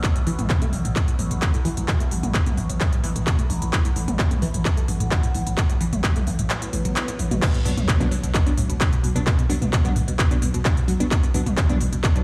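A straight 4/4 pulse at 130 BPM drives this intense, industrial peak-time techno excerpt in B minor: an up-front, heavy, tape-warm electronic kick and a techno kit of smooth hi-hats, handclaps, toms and crash cymbal push under a punchy, detuned sawtooth unison pluck riff with phaser and dub echo, a growling, buzzy, overdriven 808-style bass, and a resonant drone of moving overtones in the background. The kick drops out at 6.5 seconds as a very quiet swell and sub drop lead into the drop at 7.4 seconds, where the drone stops, the harmony shifts from A5 to Bm, and crisp, wave-folded wavetable chord stabs with delay enter shortly after, the pluck, bass, drone and stabs pumping to the sidechain in a bare room with large studio reverb.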